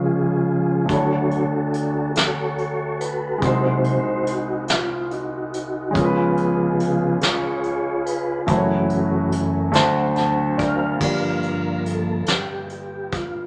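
Fervent and solemn, this slow gospel excerpt moves at 47 BPM in a straight 6/8, with a mellow, flute-like tonewheel organ carrying the lead through a slow rotary speaker and chorus vibrato while an intimate grand piano, its action noise audible, accompanies and adds a fill from 9.7 to 11.0 seconds. A vintage brush kit enters at 0.9 seconds with dark cymbals, a fat snare and a punchy kick, all steeped in a large studio reverb. The harmony passes from Dmaj7 through G#7/B#, C#7 and F#m7 to D7 before settling on Gm7 as a new section begins at 11.0 seconds.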